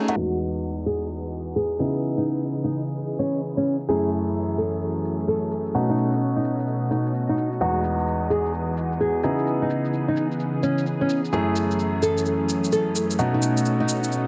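A swung two-step UK garage groove at 129 BPM in 4/4 drives this bouncy, sunny excerpt in E major, where overdriven electronic hi-hat and shaker ride under clear, up-front baby grand piano stabs with digital delay and a filter sweep, a fingerpicked nylon-string guitar melody with its own delay, and silky, warbling string machine chords with ensemble chorus sitting softly in the background, all cycling through Emaj9, C#m9, F#m9 and B9 in a lightly reverberant space.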